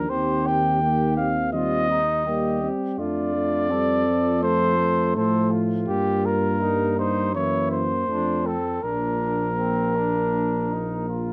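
Light reverb surrounds this noble, triumphant classical brass quintet excerpt, with all five players sounding through its 11.3 seconds. The trumpet leads up front with a smooth top and light vibrato, while the flugelhorn carries a second line from a distant, roomy place. The horn and trombone, dark like the trumpet, fill in the accompaniment as the mellow tuba anchors the bass, and the harmony passes through a Gb7 chord before settling on Bb at 8.8 seconds.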